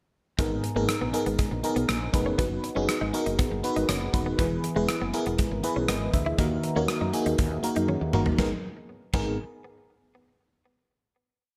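Opening at 0.4 s with glassy, bell-like FM electric piano chords colored by chorus, phaser and tremolo, a growly, round fretless bass line with chromatic approach notes, a muted single-note clean guitar riff tucked in the background and a gated 80s drum kit with a fat snare and bright cymbals, this nostalgic, moody 1980s-style pop piece in G# minor at 120 BPM moves through G#madd9, B/F#, E and D#m before a drum fill at 7.9 s leads to a final G#madd9 chord at 8.4 s.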